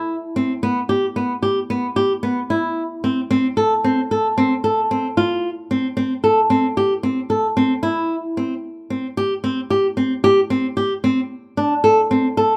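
Set in a straight 5/4 at 112 BPM, this short passage from a longer contemporary instrumental piece moves with a restless, pensive air in A minor. A lone fingerpicked flamenco guitar carries the whole 12.5 seconds, its acoustic tone dark and placed up front in the mix. The melodic material stays within a compact span from B3 up to A4, keeping the line close and inward-looking. The opening section runs to 8.6 seconds before a second section takes over and carries the piece to its cut-off point. A light reverb gives the guitar a little air around its sound while keeping it intimate.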